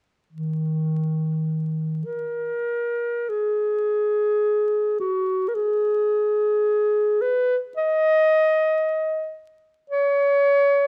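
Rubato in a loose 4/4, drifting between 33 and 57 BPM, this brief classical fragment for unaccompanied clarinet in Eb minor feels lonely and yearning, cut from a longer piece and tuned to A4 = 445 Hz. The solo clarinet sits up front with a warm tone, ranging from Eb3 to Eb5 as it plays from 0.3 to 10.9 seconds. Close, detailed microphones capture it in a moderate recital hall reverb, with vinyl crackle beneath.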